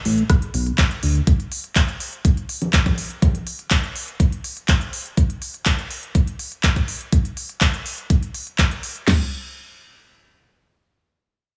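Progressive house at 123 BPM in a straight 4/4, bittersweet and driving, this excerpt opens with a fat, detuned sawtooth analog bass up front, pumping against the sidechain under a filter sweep before it drops out at 1.2 seconds. Two layered, produced electronic pop drum kits carry the groove until about 9.2 seconds, one with a knocking kick, fat snare, toms and crash cymbal, the other with crisp hats, handclaps and rim clicks. A brief burst of pumping congas, re-recorded in a small room, surfaces at 2.6 seconds, all set in a digital small-room ambience.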